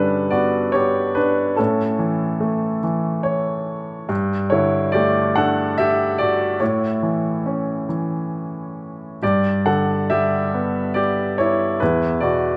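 A clear, intimate baby grand piano opens alone in a tender, calm classical piece, playing lyrically in a flowing three-beat metre with gentle rubato. Sitting up front with long sustain and audible action noise, the piano adds a brief fill from 2.8 to 4.1 seconds as the harmony drifts between G and A colours before settling on an Esus2 near the end of this fragment of a longer piece. A moderate concert hall reverb lends the natural sound a spacious, unhurried glow.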